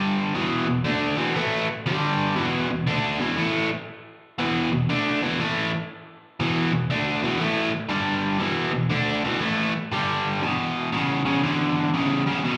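Brooding, heavy rock at 119 BPM in E minor with a swung eighth-note feel, this excerpt features a lone biting, overdriven electric guitar, picked and double-tracked up front with spring reverb, moving between E5 and G5 power chords across its 12.6 seconds, heard live through a club PA with a wet room reverb.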